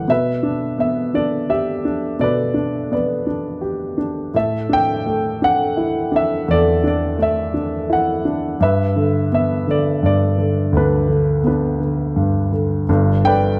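A grand piano carries this short passage entirely on its own, sounding smooth and vintage, with a short sustain and a close, up-front presence. The music is an acoustic folk-pop ballad in G major, moving at an unhurried 85 BPM in a straight 3/4. The mood is intimate and hopeful. The piano ranges from deep bass notes up into the upper middle register, outlining a simple progression that moves from G/B through Asus4 before settling on G around 8.6 seconds. A light reverb adds a touch of space around the close, warm sound. This fragment of about 13.6 seconds is cut from a longer piece.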